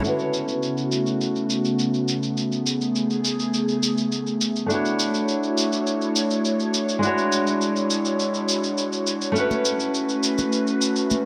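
A straight 4/4 pulse at 103 BPM comes from an up-front, gritty, tape-warm shaker, with close, dry congas and bongos joining in the background at 9.5 s in this sunny, smooth sunset chillout piece in A major. Full-bodied, fingerpicked nylon-string guitar with fresh strings carries the accompaniment through a digital delay, while a breathy, warbling vintage pad with a slow attack and long release holds sustained chords under chorus. A filter sweep runs across both guitar and pad, the chords move from A69 through E13sus4 and Dmaj9#11 back to A69, and a wet concert-hall reverb surrounds the mix.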